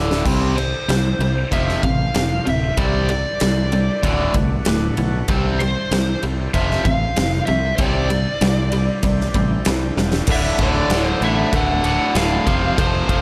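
Swaggering and driving, this classic rock excerpt at 96 BPM pairs a biting, double-tracked overdriven guitar riff with a growling fingered bass and a huge, punchy arena drum kit that opens with a fill, while a gritty tonewheel organ with key click and slow rotary speaker holds very quiet sustained chords under a lead guitar melody from a small cranked amp, all moving through Cadd9, F and D6 before shifting to D at 10.3 seconds, where a very quiet metallic cowbell joins.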